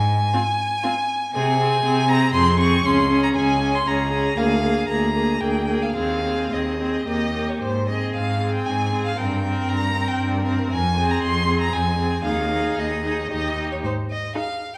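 A single bowed violin carries the melody up front, its tone rich and smooth with an even vibrato, though it sits at a slight distance and climbs as high as Db6. This is a quick classical-period movement for string quartet in Ab major and 3/4, moving at roughly 107-122 BPM with a rubato feel and an urgent, stormy mood. Beneath it, a close, up-front cello holds the bass with a full, steady sound, while a second violin, softer in attack and warm in tone, sings an expressive inner line with portamento. The viola fills in the accompaniment with vibrato and its own sliding, expressive phrasing. The harmony moves through F minor and Bb minor colours toward Eb before turning back to Ab at 7.6 s, where a second passage begins and ends on a bare Ab chord. The quartet is heard in a reverberant recital hall, in a fragment cut from a longer piece.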